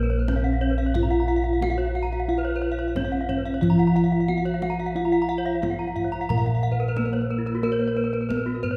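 A mellow, padded bronze metallophone melody, two bright horn-mallet metallophones ringing out shimmering arpeggios (one close-miked and dry), and round, beating bossed gongs holding the bass up front open this shimmering, ceremonial fragment of Balinese gamelan at 90 BPM in Bb pelog, with a deep kendang joining in the background at 0.3 s, all heard from further back in a reverberant concert hall.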